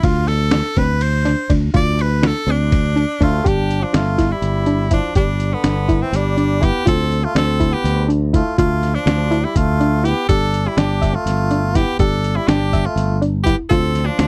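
Driving and luminous, this progressive instrumental band piece moves in an uneven 7/8 with a straight feel, and it is cut from a longer performance. An edgy tenor saxophone carries the melody from the start, its punchy, forceful tone colored by vibrato as it takes a solo through the opening 3.5 seconds. Beneath it, a soft, round pluck with a fast attack, short decay and a touch of chorus spins arpeggios, while a growly, up-front fretless electric bass sustains the low end and a gritty, pitched-down sampler-style drum kit thumps along with kick, snare, hi-hat and ride. At 3.2 seconds a brilliant trombone joins with a second line, sounding distant and roomy with light vibrato. The harmony shifts between Dm7, G5, Dm and Gsus2, and the whole is captured as a dry, close 1970s-style studio recording with little reverb.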